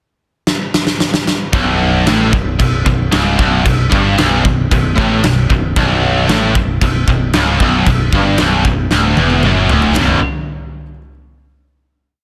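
A big, natural-sounding acoustic rock kit opens this dark, heavy metal piece with a fill at 0.5 s, its bright cymbals and punchy kick sitting up front before settling into a driving metal groove at a straight 114 BPM in B minor. At 1.5 s, three distorted electric guitars (one tight, one scooped and high-gain, one double-tracked and high-gain) enter further back with a picked single-note riff over Bm. Entering alongside them, a growly, direct picked electric bass doubles the riff in driving eighth notes. After another drum fill, everything that's playing lands on a final B5 chord at 10.0 s, all within a dense, heavily limited modern master.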